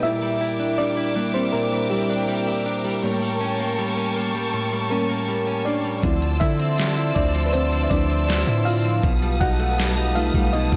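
A dark, full-bodied FM electric piano with tremolo leads from the start, alongside lush, bowed symphonic strings holding sidechain-pumped chords and a clean, direct-recorded electric guitar picking compressed arpeggios through digital delay. At 6.0 seconds a deep, sine-like 808-style bass with transformer saturation and a smooth, electronic drum kit with a knocking kick, deep snare and silky hats arrive up front. This longing, sensual contemporary R&B fragment moves through jazzy chords such as Dm9 and A7b9, set in a light digital ambience with a blown-out, overdriven sound.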